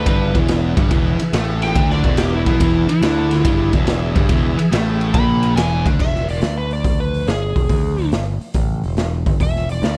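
A swung 142 BPM groove in 4/4 drives this gritty, swaggering slice of blues rock and southern rock in E mixolydian, played by a power trio core with organ. The raw garage drum kit sits up front with a boomy kick, a medium-tuned snare and dark, rolled-off cymbals in a small, pumping room, while the growling picked bass adds punchy, overdriven weight underneath. For the first 6 seconds, a thick, double-tracked fuzz guitar grinds out a bright riff and an overdriven tonewheel organ holds full chords in the background, its slow rotary speaker, chorus vibrato and key click giving it a churning texture. Over the top, an overdriven slide guitar with slapback echo carries the melody, taking a solo through that opening stretch and continuing on after the fuzz guitar and organ drop out at 6 seconds for the second section. The dry, close sound keeps every part immediate until the cut at 10 seconds.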